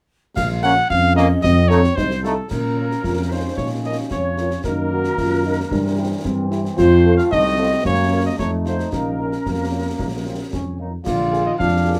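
A resolute, martial military-style march for wind band in Bb minor at 112 BPM in 2/4, this fragment puts a mellow, soft-attacked cornet melody up front over a mellow tuba bass, with an airy, vibrato-tinged small flute group in the background until 10.5 s, a dark, smooth-topped euphonium second line joining at 0.9 s, a warm French horn section accompanying and a tight trombone section holding sustained chords, all driven by concert snare drum, dark-toned clash cymbals and concert bass drum in a short, wet booth ambience heard from further back in the room.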